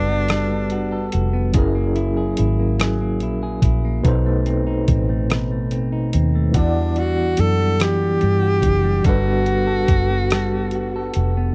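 A dry, close recording with a 1970s studio character frames this yearning, late-night slow R&B fragment in a straight six-eight feel, cut from a longer piece. The dusty, sampler-style drum kit comes in at 0.3 seconds, up front and compressed, with a thumpy kick, hi-hat and rim click, while a dark, round, foam-muted fingered electric bass sits just as close in the low end. An overdriven tine electric piano carries the accompaniment through a combo amp, its barky, gritty tone shimmering with a medium tremolo, and a clean, fingered electric guitar plays a softer second line. A breathy tenor saxophone with clear tone and pop-style vibrato takes the melody in a tape echo, sounding a brief phrase at the very start before returning at 6.6 seconds as the solo voice. Lush extended chords such as Gmaj9, F#9, B7b9 and Em9 give the harmony its aching, after-hours colour.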